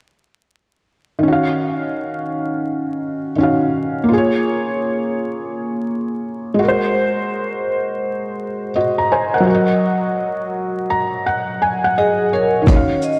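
A muted, intimate felt-muted upright piano with audible action noise carries this reflective, melancholic lo-fi hip hop fragment through Ebm9, Bbm7, Ab9 and Gb6 under cassette tape and low-pass filtering, playing a fill from 10.5 seconds before a metallic, ringing, softly malleted vibraphone with motor vibrato enters at 12.0 seconds, and at 12.7 seconds a single floating, nasal bowed cello note joins a gritty, compressed boom bap sampler-style drum kit of thumpy kick, hi-hat and shaker with vintage 12-bit crunch, all within a dreamy, lush hall reverb and vinyl crackle.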